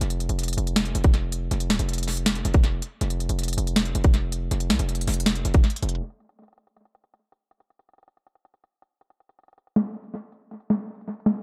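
Brooding and dark, this short trap excerpt rides a half-time feel at 160 BPM, with a distorted 808-style bass, heavy and saturated with a noise layer over its sine core, sitting up front from Eb1 to C2 until it drops out at 6.0 seconds. The electronic drum kit carries on through 11.4 seconds with a hard-clipped kick, sharp snare and crisp hats, a tape-warm tint and tape echo. The echo-heavy mix sits under light reverb and a low-pass filter, and a filter sweep runs from 6.0 seconds to the end.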